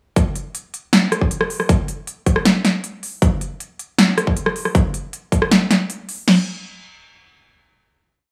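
A dreamy, lush future bass piece opens at 0.2 seconds on a half-time drop built from two layered, up-front electronic drum kits, one carrying the punchy kick, snare and crash and the other adding a punchy snare, rim clicks and crisp hi-hats with rolls, both overdriven and set in studio reverb within a light reverb space, before a final hit closes the piece from 6.3 seconds.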